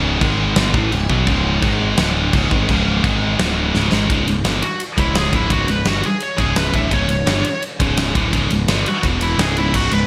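A double-tracked, scooped high-gain guitar sits up front with a bright, distorted picked riff, opening this epic, aggressive heavy metal piece cut from a longer work. Underneath, an overdriven picked electric bass adds a dark, round low end, while a big acoustic rock kit with a fat snare, punchy kick and gated reverb drives the music with crash, china and ride cymbals. The opening passage moves in a half-time feel over power chords, and a drum fill at 3.7 seconds pushes into the next section. A high-gain lead guitar enters at 4.6 seconds for a distorted picked solo in a higher register, carrying the melody to the end. The sound is a bright 1980s-style digital production with light reverb and small room ambience.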